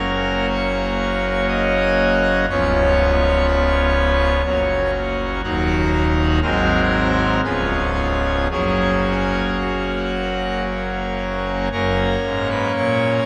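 Bathed in a long, wet cathedral reverb, this 13.3-second fragment of a majestic, reverent classical chorale for solo pipe organ unfolds in F# major at a rubato 55-62 BPM in 3/4, the full organ sitting up front with brilliant mixtures and a romantic voicing that spans deep bass tones to bright upper notes, moving through a simple progression of F#, C#7, D#m and G#7 before settling home on F# at 8.5 seconds and turning to a brief new section at 11.7 seconds.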